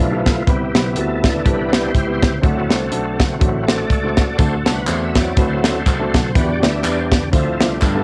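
Uplifting and reverent, this short uptempo gospel excerpt moves at 122 BPM in 4/4 with a swung eighth-note feel, led by a gritty, overdriven tonewheel organ solo on sustained chords turning through a slow rotary speaker with chorus vibrato over changes from Cmaj7 to D7, Em7 and Dm7. An intimate grand piano with audible action noise comps beneath it, a tine electric piano carries the bass line through its built-in speakers, and a punchy, polished fusion drum kit sits up front with hi-hat, kick and a medium-tuned snare. From 4.4 seconds a distant tube shaker and group handclaps join from a large room, while light reverb and cassette tape colour the home-recorded sound.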